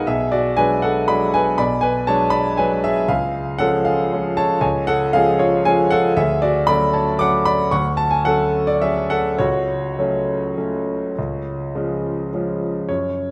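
This classical piano waltz in 3/4 is a short solo passage cut from a longer piece, and its mood is wistful and nostalgic. A concert grand plays alone throughout, and the rubato phrasing lets the triple metre stretch and breathe. The harmony drifts from G#m7b5/B through C# and Dmaj7 to F#m/C# before settling back on C# near 11.2 seconds, which gives the passage a gently unresolved, yearning colour. The piano sits up front with an intimate, polished tone, deep bass and long sustain, and the noise of its action stays audible beneath the notes. A moderate concert hall reverb surrounds the instrument, adding a sense of space while keeping its close presence intact.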